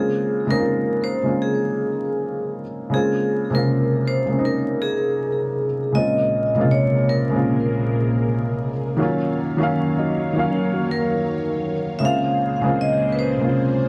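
A ringing, metallic vibraphone melody played with hard mallets and bathed in plate reverb opens over a dark, woody, slightly detuned upright piano with audible action noise and cassette-tape wear in this nostalgic, reflective lo-fi hip hop excerpt at 79 BPM in Bb minor, swung on the sixteenths and moving between Bbm9 and Ebm9, as vintage sawtooth string-machine cellos with a sub octave, phaser and ensemble chorus enter at 5.9 seconds, a mellow, clean tine electric piano adds a brief second line from 10.0 to 11.8 seconds, and vinyl crackle sits over a short studio reverb.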